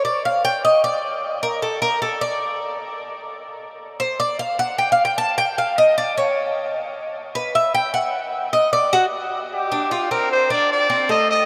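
A straight 4/4 pulse at 152 BPM drives this short, danceable Latin cut in G minor, taken from a longer piece. The Cuban tres opens alone for the first 9.5 seconds, picking warm, metallic arpeggios on its doubled strings, with some courses ringing in octaves. It sits up front, acoustic and warm. At 9.5 seconds a pop-style trumpet takes the melody as a solo, its tone punchy and marked by vibrato, and it plays close in the mix yet sounds distant and roomy. The harmony moves from an open, chordless start to G5 and then Csus2. A huge, wet reverb with a long 8.7-second decay places the whole ensemble in a vast, echoing space, giving this warm, lively music a spacious glow.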